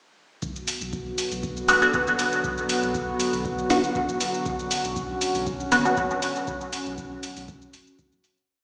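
Dub techno at 119 BPM in B minor with a light swing, cavernous and hypnotic, built on a warbling, lo-fi tape-like pad holding sustained Bm chords with chorus, phaser and sidechain pumping, a round sine sub bass in a dotted rhythm, a dry four-on-the-floor analog kick, metallic programmed shaker and hi-hats, and bright, detuned, wave-folded chord stabs that echo sparsely through dub delay from 1.7 to 6.0 seconds, all set in a huge stone-room reverb with a small-speaker, big-sound-system character before fading out from 5.8 seconds.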